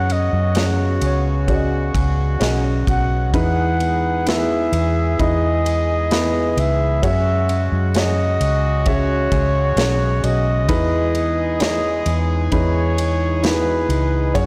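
A blown-out, overdriven recording with light reverb and small-room ambience frames this tender, emotional pop ballad excerpt at 65 BPM in E major, moving between F#sus2 and Emaj7. A breathy, close-miked flugelhorn carries the jazz-style solo melody with vibrato, a soft attack and scooped notes, over a dark concert grand piano with deep bass, a distant, roomy classical brass section holding tight sustained chords, and a very quiet, full-bodied jumbo steel-string acoustic guitar fingerpicking arpeggios. Up front sits a round, foam-muted, amped vintage electric bass, while a modern studio drum kit with tight kick, medium-tuned snare and ride cymbal enters at 0.1 seconds.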